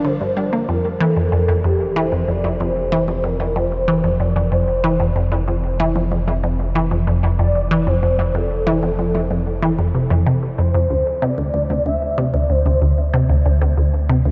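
A straight 4/4 pulse at 94 BPM drives this mysterious, cosmic piece of ambient, sequencer-driven space music, cut from a longer piece: an up-front, juicy and squelchy resonant blip pluck riff with phaser and analog delay rides over a round, deep analog bass with a filter sweep, while a smooth, expressive synth lead with chorus, vibrato and analog delay carries the melody until 13.1 s, the whole mix sitting in a huge ambient reverb with a 9.2 s tail and a dark, muted top end as the harmony moves from G5 to F and then to D7(no3) at 10.9 s.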